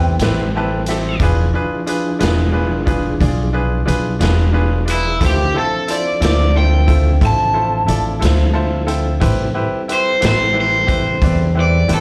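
Mournful and smoky, this slow blues in 12/8 at 60 BPM in A minor, cut from a longer live club set with light reverb and room ambience, features an overdriven, hollow-body electric guitar soloing up front over a bright, brilliant grand piano with slapback echo and short fills near the start and at 8.2 seconds, a mellow, flute-like tonewheel organ holding chords in the background through a slow rotary speaker and chorus vibrato, a woody, thumpy pizzicato upright bass, and a gritty, saturated garage drum kit with a punchy kick that enters at 0.2 seconds, moving through Am7, E7b9 and Dm7 before returning to Am7.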